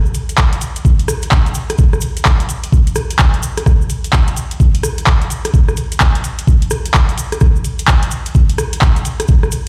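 UK garage excerpt at 128 BPM in 4/4 with a 63% 16th-note swing and a soulful, moody feel, built on an up-front electronic kick that knocks in at 0.4 s, a layered garage kit of handclaps, rim clicks and metallic hi-hats re-recorded in a small room, and a grainy, bright cabasa kept close and dry in the background, all set as if played over a big sound system in a bare room with large studio reverb.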